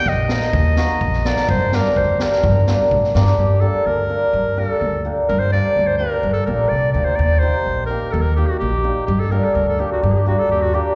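A clear, soft-attack clarinet with a slapback echo leads this bittersweet, soulful klezmer excerpt in 2/4, playing a classical-style solo line from the start over a woody, thumpy pizzicato upright bass and a mellow, shimmering hammered dulcimer. A boomy, high-snared street-band kit joins for the opening stretch only, dropping out at 3.4 seconds as the music moves into a new section where bass and ringing dulcimer carry on beneath the clarinet. The harmony settles around G minor with a turn to E-flat, all heard as a live gig through the venue's PA with recital-hall reverb.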